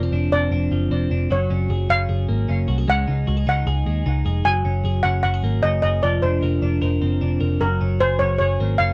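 A dry, close recording with a 1970s studio character frames this short cut from a longer piece of jangly indie pop, moving at 152 BPM in a straight 4/4 with a restless, bittersweet mood. A shimmering, metallic steel pan carries the melody up front between Bb4 and Ab5, its notes trailed by tape echo. Beneath it, a bright, twangy twelve-string electric guitar plays compressed, picked arpeggios from F3 to Bb4, sitting lower in the mix and also treated with tape echo. A dark, round, foam-muted electric bass sits up front with an amped tone, holding the low end from F1 to Eb2. All three parts play throughout the 8.9 seconds as the harmony cycles through added-ninth and suspended chords, opening on a rootless Bbadd9 over F before moving through Gbadd9 and Dbsus2.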